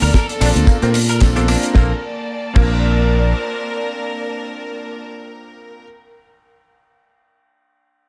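Groovy and feel-good, this nu-disco fragment in Bb major moves at 112 BPM with a swung sixteenth feel, as a tight, dry kick and a fat-snared 70s kit with hats, ride and crash sit under tambourine and congas in the background, a warm fingered bass is up front, and a twangy, clean direct guitar riff with ensemble chorus and 12-bit sampler grit runs until 2.7 seconds, while smooth sustained strings pumping with sidechain hold until 5.0 seconds, an earthy, close violin section melody with tape echo carries on to 5.8 seconds, and an electric grand piano with clangy low end and slapback echo plays through to 5.9 seconds, all in a small room reverb.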